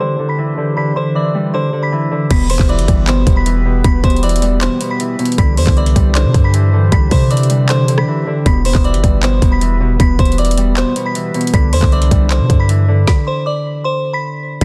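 Riding a half-time trap feel at 156 BPM, this melancholic, eerie hip hop fragment opens with a delicate, tinkling FM tine bell melody over thumb-plucked Celtic harp and a warbling, nostalgic lo-fi pad sitting mellow in the background, moving between Cadd9 and Em. At 2.3 seconds the trap kit arrives up front with a hard-clipped kick, woody snare, metallic hats, handclaps, rim clicks and crash, joined by a deep, boomy sine 808 bass with a noise layer. A brief break comes at 8.1 seconds and a stop at 13.1 seconds, all within a dense, heavily limited modern master.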